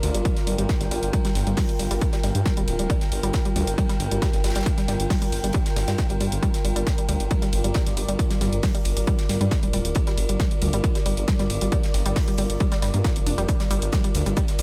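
Driving peak-time techno at 136 BPM in G minor, this industrial-toned excerpt cut from a longer piece rides a steady Gm foundation, with an overdriven, heavy electronic kick up front from 0.3 seconds and a thick, menacing detuned saw bass pumping beneath it. Overdriven electronic hi-hat and shaker sit alongside a dry, polished funk kit of hi-hat, ride and high-tuned snare, while a round analog pluck riff with chorus, delay and a filter sweep enters at 0.1 seconds. A breathy pad with slow attack and long release hovers above, all set in light small-room ambience.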